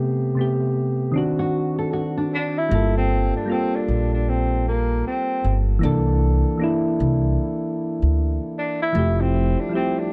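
A light reverb surrounds this dreamy, cosy lo-fi hip hop excerpt at 77 BPM in 4/4, swung on the sixteenths. Round, mellow electric-piano-like synth keys, low-pass filtered with chorus and a cassette-tape colour, open alone over Am9 and D7b9. They are briefly joined by a dark, fingerpicked nylon-string guitar with tape echo and finger squeak, and at 2.3 seconds a breathy, whispered tenor saxophone takes the melody with vibrato and scooped notes. From 2.7 seconds a woody pizzicato upright bass sits up front as the chords move through Gm9 and C13 to Fmaj9.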